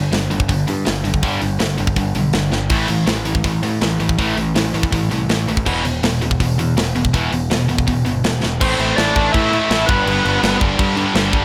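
A straight 4/4 pulse drives this aggressive, raw punk rock clip at 162 BPM, with a tight metal drum kit sitting up front: a gritty, saturated sound with a tight kick, medium-tuned snare, hi-hat and crash cymbal, heard in a big room, and fills at 2.5 and 8.4 seconds. Two picked, distorted electric guitars hammer out the riff over power chords moving through G5, A5 and E5, one compressed and set in the background, the other tight and bright. Beneath them a growling picked bass, played direct and amped with overdrive, adds a punchy low end. At 8.6 seconds the harmony shifts to Am and G as a biting, overdriven lead guitar takes a brief melody above the riff. The mix is dry, with a faint mains hum underneath, and the clip is cut from a longer piece.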